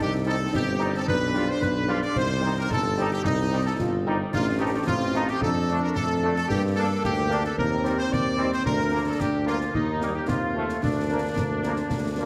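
Festive and proud, this excerpt of a military-style wind band march moves at 111 BPM in a straight 2/4: a clear trumpet section carries the melody over an up-front, mellow tuba bass, while a dark, close-miked euphonium and a background woodwind section play second lines, very quiet French horns add accompaniment, and a vintage-toned trombone section holds sustained chords, with concert snare, bass drum and clash cymbals joining at 0.5 seconds, the mix sitting in a scoring-stage reverb with a heavily compressed, radio-like sound.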